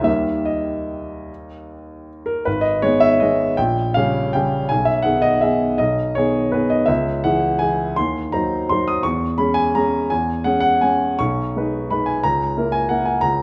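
A wet, large studio reverb with a 1.5 s decay surrounds a smooth, vintage-toned grand piano placed up front, playing alone throughout this short passage cut from a longer piece. It is a nostalgic, bittersweet classical waltz in 3/4 and G# minor, tuned to A4 = 439 Hz, moving with a rubato feel between 143 and 186 BPM and spanning G#1 to Eb6. After a brief opening on D#, a new section begins at 2.5 seconds on G#m and wanders through diminished colours such as Gdim/Bb and Cdim/Eb, touching C#m before returning to G#m/B and ending on A#dim/C#.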